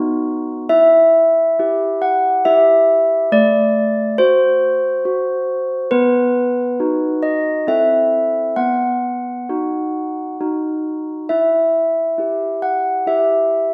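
A solo set of handbells opens the recording, sounding a B chord before the music settles into E minor at a slow 68 BPM in three-four time. This classical tune carries a wintry, solemn mood, with the bells ranging from A3 to F#5 and moving through Em, F#dim/A, B and Am/C before returning to Em at 11.3 seconds. The bells have a clear, ringing, bell-like tone struck with medium clappers, placed up front with a boxy, small-room character close on them. Around that closeness, a wet recital hall reverb of 1.5 seconds lets each chord hang in the air. The passage is cut from a longer piece and runs to 13.7 seconds.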